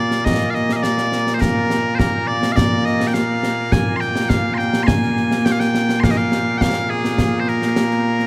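Loud bagpipes carry the melody up front, their bright, piercing tone sounding continuously across this short 8.3-second cut from a longer piece of ceremonial, stirring Scottish pipe music in a straight 4/4. Concert snare and bass drum enter at 0.1 seconds, sitting a little lower in the mix with dark cymbals and a small-room acoustic character. A moderate, huge ambient reverb surrounds the performance, which is heard from further back in the room.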